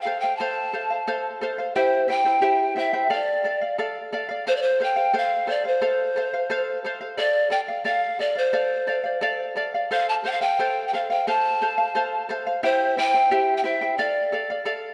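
A straight, even two-beat pulse carries this wistful, melancholic Andean folk passage, taken from a longer piece. A bamboo pan flute sings the melody from the first moment until 14.6 seconds, its tone airy and hollow with a gentle vibrato and a crisp, chiffy attack that lends each note a breathy edge. Beneath it, a fingerpicked acoustic charango plays the accompaniment until 14.9 seconds, its double strings, some doubled at the octave, giving off a shimmering sparkle. Both instruments sit up front, yet the flute also carries a slightly distant quality. The harmony circles among F, C and D minor across two statements of the same section, the second beginning at 4.5 seconds. A wet scoring-stage reverb with a 1.6-second tail surrounds the pair in a spacious, reflective room.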